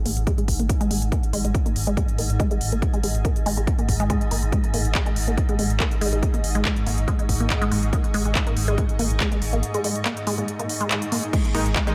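A straight, driving pulse from a heavy, layered electronic kick and a drum kit of crash, handclaps and smooth hats powers this dark, hypnotic stretch of peak-time techno, cut from a longer piece. A deep, saturated sub bass and a squelchy, resonant blip pluck with phaser and delay pump against the beat, while a swarming, wave-folded drone and a blurred granular cloud pad fading in behind them add tense, evolving atmosphere. A punchy, detuned supersaw stab pushes up front at 11.5 s.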